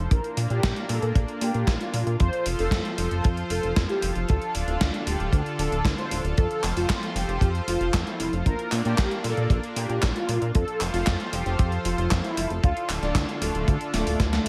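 Sunny and danceable, this italo disco excerpt moves at 115 BPM in F major, cycling through Bb, F and Dm over a dry, tight acoustic kick that sits up front with a rolled-off top. A glossy, detuned pulse-wave bass with chorus anchors the low end beneath a lush, warbling sawtooth unison pad holding sustained chords, while a round, brassy synth lead carries the melody through chorus, phaser and digital delay with a touch of vibrato. An overdriven, sampler-style drum machine adds handclaps, hi-hat and a gated-reverb snare, closing with a drum fill from 13.9 to 14.5 seconds.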